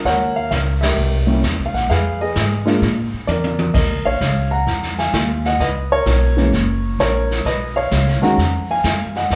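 Moody and swinging, this short jazz piano trio cut moves at 130 BPM in 4/4 with a firm swung eighth-note feel, set in Eb minor and tuned slightly below standard pitch. The grand piano carries the melody from D#3 up to Bb5, its intimate, up-front tone revealing audible action noise. Underneath, the upright bass plucks a woody, thumpy line on gut strings between Gb1 and Bb2, while the vintage brush kit enters at 0.1 seconds, its dark cymbals and punchy kick sitting mid-forward with a rolled-off top. The whole band hits an accent at 0.7 seconds, and a drum fill from 3.3 seconds leads into a new section at 3.7 seconds, where the harmony moves from a C7, Fm7b5, Bb7 turnaround into Ebm9, Db7, Gb and a lush Bmaj9#11. The trio plays live together in a large studio room, with moderate reverb giving the sound a natural, cohesive space.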